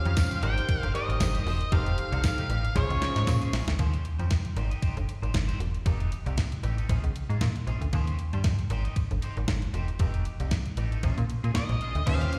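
Heard as a live gig through the venue's PA, with the air of a recital hall around it, this cut from a longer early-eighties boogie funk piece sets a slick, late-night mood at 116 BPM in 4/4, with a light swing on the sixteenths in Bb dorian. A crisp 8-bit digital drum machine sits up front with a thumpy kick, a medium-tuned snare, hi-hat and crash, and its tape-warm, sampler-style sound carries slapback echo, joined briefly by a jingly tambourine in the background. The snappy FM bass, also up front, has a fast, metallic attack and a decaying tone. Above them, a bright, twangy electric guitar on the edge of break-up plays a riff throughout, dressed in lush chorus and slapback echo. In the opening, a dark, fuzzed-out octave lead guitar with tape echo carries the melody over a punchy sawtooth polysynth comp with a sub octave, filter sweep and chorus. Both drop out during a drum fill from 2.8 seconds, and the lead guitar returns near 11.6 seconds. 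The harmony cycles through Abmaj7, F9 and Bbm7 with Eb chords in between.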